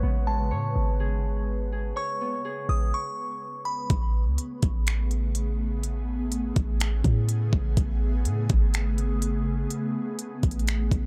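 Atmospheric cloud-rap hip hop in A major at 124 BPM with a half-time feel, this blissful, dreamy excerpt opens on an Amaj9 chord as an ethereal, detuned pad with chorus, phaser, reverb and sidechain pumping sustains under a fingerpicked Celtic harp arpeggio ending at 5.3 seconds, a tinkling FM tine-bell melody with tape echo, and a deep, boomy 808-style bass, all through a filter sweep and a stop before an overdriven trap kit of knocking kick, crisp hats and finger snaps enters up front at 3.9 seconds in a dark, dry production.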